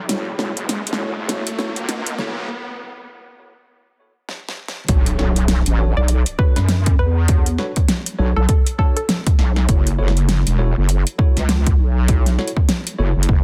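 Glitch hop at 100 BPM in B minor, this swaggering, playful clip from a longer piece rides a swung 4/4 groove. It opens with a build-up over the first 4.9 seconds: drum fills from the pop drum kit's fat snare and metallic hats, a riser and a filter sweep, then a brief break before the drop lands at 4.9 seconds with an electronic impact. There the punchy, overdriven electronic kick enters up front, joining a heavy, detuned square-wave wobble bass that is saturated and resonant with chorus. A worn, slightly out-of-tune tine electric piano plays stabs through overdrive, delay and sidechain pumping, moving over F#m7, Bm7 and back to F#m7. Between 6.0 and 9.0 seconds a woody, wave-folded pluck adds a short, mellow melody with chorus and delay. The mix is dry and dense, with a heavily limited, high-pass filtered modern master.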